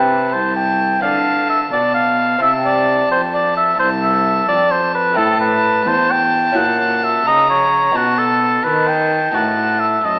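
An up-front oboe carries the solo melody in this flowing, solemn baroque-style sonata movement, set in 12/8 at 86 BPM and cut from a longer piece. A single violin with an airy, nasal, gut-string bow holds a close second line, while a rich, reedy cello supplies the bass and a mellow, fingerpicked lute with double strings sits delicately in the background. The whole ensemble sounds through a wet recital hall reverb and an AM radio quality.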